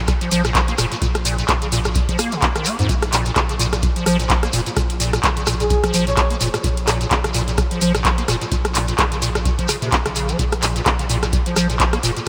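A dreamy mix soaked in a huge ambient reverb opens this hypnotic, trippy acid house excerpt, cut from a longer piece and swinging on the sixteenths. A squelchy, hollow square-wave acid bass carries the riff up front, its resonant filter pluck striking fast and then decaying while ensemble chorus, sidechain pumping and a diffuse ambient delay blur its edges. Beneath it, a round sine sub bass sustains deep notes with the same pumping motion, and an electronic kick drum lands deep and analog. A booming analog drum machine sits dry and forward with handclaps, metallic hi-hats and rim clicks in a small room reverb, while a grainy, mellow shekere adds close acoustic texture throughout. For a brief moment between 5.6 and 6.3 seconds, a breathy, flute-like synth lead floats in softly with vibrato, chorus and tape echo before vanishing.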